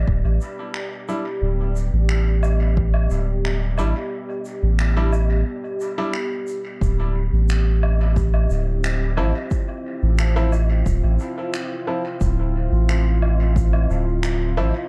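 A straight 4/4 groove at 89 BPM is carried by an overdriven electronic kick set deep in the background, with a dub-echoed shaker, finger snaps and woodblock scattered around it, in this hazy, meditative ambient dub excerpt in D dorian. A round, soft sub bass sits up front beneath a dark, detuned pad with chorus and built-in reverb, while a brilliant, woody upright piano adds echoing stabs from 1.1 seconds. After a break at 5.5 seconds, the harmony moves from a rootless Em7/D to Dm9 at 6.8 seconds, all within a small, echo-heavy room.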